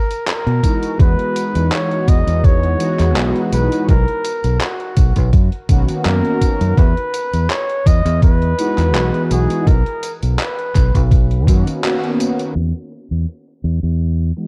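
A lazy 83 BPM groove in 4/4 with a gentle sixteenth-note swing sets up this woozy, nostalgic vaporwave fragment in B major, cut from a longer piece. A detuned 8-bit drum machine opens with handclaps, hi-hat and tambourine that sound grainy and muffled behind low-pass filtering, as if played back in a large room, and a thumpy, overdriven electronic kick soon joins up front. A fingered electric bass with tube saturation anchors the low end, while mellow synth brass, round and slowly evolving with analog chorus, sustains the chords as they drift between Emaj9 and Bmaj7. Over this, a breathy flugelhorn plays a jazz-style melody with light vibrato and scooped notes, trailed by tape echo, until it stops at 11.1 seconds. A brief break with a band accent arrives at 11.8 seconds, and from 12.6 seconds the harmony falls away into a filter sweep carried by the remaining parts. The whole mix is dark and warm, wrapped in a digital ambience.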